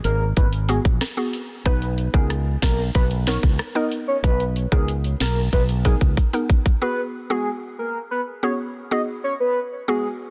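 A straight 4/4 groove at 93 BPM from a tight, electronic island pop drum kit with sharp snare, rim click and metallic hats drives this bouncy, hypnotic dancehall excerpt in G# minor, alongside a dark, punchy fretless electric bass until 6.1 s, a woody FM mallet-like synth pluck entering at 0.7 s with chorus and sidechain pumping, and a soft, detuned octave-layered synth lead carrying the melody through chorus and tape echo, while the drums close with a fill before dropping out at 6.8 s, all in a dry, dense, heavily limited mix that moves between G#m7 and Bmaj7.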